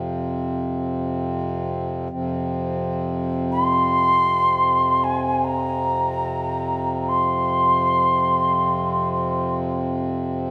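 Bathed in a wet, spacious reverb with a touch of small-room ambience, this short portion of a longer world meditation piece drifts in free time, as a reedy, breathing pedal harmonium holds a mellow low drone from the opening to 10.5 seconds and a clay alto ocarina, breathy and expressive with gentle vibrato and a soft attack, sings a calm, high melody between 3.5 and 9.5 seconds.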